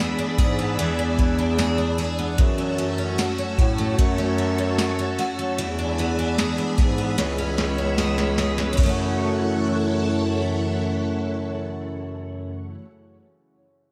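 Melancholic and ethereal, this dream pop passage is cut from a longer piece and drifts in a straight 4/4 feel through an echo-heavy mix with light digital ambience. A picked twelve-string acoustic guitar sits up front, its bright, shimmering, octave-doubled arpeggios coloured by subtle chorus and dub echo. Behind it, a string machine holds lush, mellow sustained chords with a slow attack and a vintage sawtooth character, thickened by ensemble chorus and a sub octave. A bass clarinet carries the low line in a distant, roomy classical style, placed forward in the mix. A soft vintage rhythm box enters at 0.4 seconds with a deep kick, crisp snare, ride, crash and tambourine, overdriven and soaked in dub echo as though re-recorded in a large room, and it plays a fill from 7.2 seconds before dropping out at 9.0 seconds while the chords move from E7 through F#m7 and C#m7 back to F#m7.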